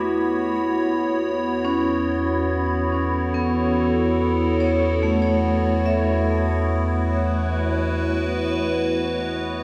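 In this serene, melancholic ambient passage in free time, a bright, detuned wavetable pad sits up front, morphing through a filter sweep and phaser as it sustains Em into F#m7/E, while metallic, ringing hard-mallet vibraphone arpeggios with fast motor vibrato trail dub echoes and a very quiet glassy harmonica beats softly in the background; at 1.5 seconds a dark, wave-folded drone rumbles in on E2, and the whole echo-heavy mix is bathed in a wet spring reverb.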